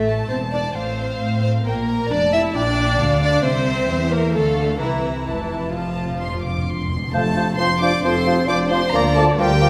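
A quick, spirited and graceful classical-period movement for symphony orchestra in F major, moving at 133 BPM in a straight 4/4, this short passage is cut from a longer piece. Chamber-sized strings carry it from the start: violins sing the melody high above a second violin line, with violas filling in the accompaniment, all bowed sul tasto with soft attacks and vibrato for an intimate, close sound. Beneath them a dark cello section sits in the background while a clear, floating double bass section anchors the bass line. At 5.3 seconds timpani played with hard mallets on calf heads add an articulate fill, and at 7.1 seconds the winds join: a clear oboe, a dark, distant clarinet, a mellow, hollow silver flute and a bassoon, with a tight French horn section holding sustained chords. The harmony moves through F/A, Gm/Bb, C, Dm and C7 before settling on F, then touches Bb/D near the close, all bathed in a wet scoring-stage reverb.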